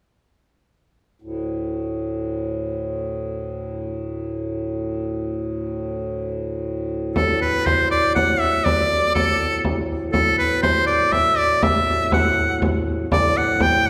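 A wet recital-hall reverb with a 1.8-second decay surrounds this festive, ancient-sounding medieval dance, cut from a longer piece and set in D mixolydian at 121 BPM in a straight 3/4. A pedal harmonium opens alone at 1.2 seconds, holding a low drone between D2 and A2 with a reedy, breathing, mellow tone that sits gently beneath the hall's air. At 7.2 seconds an edgy shawm enters as the solo melody, close-miked and up front, singing between A4 and G5 with a folk-style vibrato. A frame drum joins at the same moment, its deep, large acoustic body struck with soft hands and captured close. The shawm, drum and harmonium continue together to 13.9 seconds, the biting lead riding high over the sustained drone and the drum's rounded pulse.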